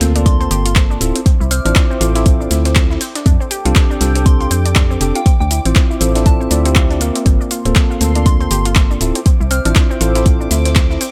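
Hypnotic and moody, this deep house excerpt from a longer piece runs at 120 BPM in D minor with a swung 16th-note feel, cycling through chords such as Gm11, Dm9 and F69 over a deep, up-front kick, a hollow, organ-like FM bass, and sidechain pumping on the bass, electric piano, pluck and pad. A punchy analog drum machine adds handclaps, hi-hat and shaker beside a very quiet, gritty sampler-style kit of hi-hat and snare. Bright, bell-like electric piano stabs with 12-bit grit and dub echo, nasal sawtooth pluck arpeggios, a detuned background pad with chorus and phaser, and a soft, pure synth bell melody from 0.3 to 9.7 seconds float over a barely audible sub drop at the start, all in a dry sound.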